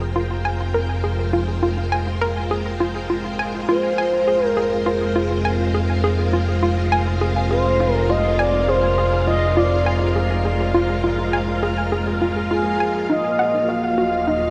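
A lush string machine fades in with ensemble chorus on sustained Fmadd9 chords over a fat, nasal analog bass, while a hollow, bouncy square pluck riff with chorus and analog delay enters at 0.2 seconds and an airy, wind-like tuned noise texture breathes very quietly beneath. This mysterious, hypnotic slice of sequencer-driven space music moves at 102 BPM in F minor, with a smooth, expressive synth lead carrying the melody from 3.7 seconds, adorned with vibrato, chorus and analog delay. Huge ambient reverb and a cassette tape tint surround the parts, and the harmony shifts to Ebmadd9 at 13.1 seconds as the fragment closes.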